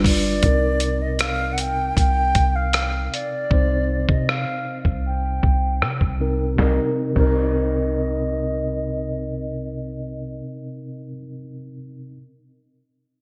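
A late-night, sensual contemporary R&B excerpt opens on a gritty, compressed sampler-style drum kit with a thumpy kick and gated reverb, a deep, round 808-style bass, and a clean, up-front tine electric piano resting on a Cm7 chord, while an airy jazz flute with vibrato and digital delay drifts in from a distance. A filter sweep runs through the opening section, and the whole mix has a bright 1980s-style digital sheen and a lush hall ambience. The drums drop out at 7.4 seconds, the bass and flute at 10.4 seconds, and the electric piano carries on alone until 12.2 seconds.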